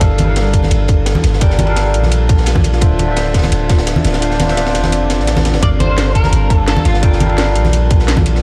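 A dark, lightly reverberant production frames this lush, melancholic liquid drum and bass excerpt at 171 BPM in G dorian, where a barky, overdriven tine electric piano with chorus and delay and an ethereal, detuned pad with tremolo and sidechain pumping drift over Gm9 and Dm7, a deep, up-front 808-style bass hums underneath, a tight overdriven kick (dropping out from 4.2 to 5.6 seconds), a cracking drum and bass kit with metallic hats, a gritty breakbeat kit with dark cymbals, and background congas drive the groove, and a slightly broken-up electric guitar adds a brief fingered melody at 5.6 seconds.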